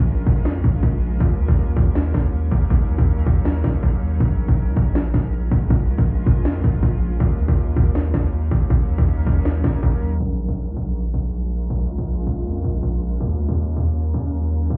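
A saturated, heavy 808-style bass growls up front through this menacing, brooding half-time trap excerpt at 160 BPM in Bb minor, joined by a hard-clipped, crisp electronic drum kit that drops out at 10.2 s and a blurred, evolving granular cloud pad sustaining Bbm7 and Ebm7 chords, all heard muffled as if through a club wall with vinyl crackle and a low-pass haze.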